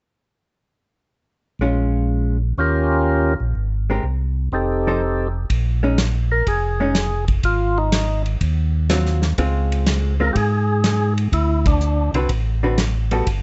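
A clean, hollow-body jazz guitar comps over a round, lightly overdriven tonewheel organ bass with chorus vibrato and slow rotary speaker from 1.6 s, a percussive, key-clicking tonewheel organ with slow rotary carries the melody in Bb dorian from 2.6 s, and a tight, dark-cymbaled small-room soul drum kit enters at 5.5 s in this late-night, soulful swung soul jazz organ trio fragment at 124 BPM, which has a band accent at 11.6 s under light reverb.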